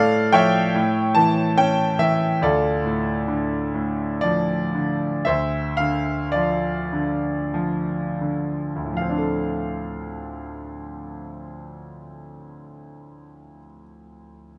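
A bright, up-front grand piano with long sustain carries this dark, wistful fragment of a lyrical classical solo in 3/4, its rubato phrasing slowing between 2.4 and 9.0 seconds as D minor harmonies unfold through three brief sections, captured by close, detailed microphones in a light reverb.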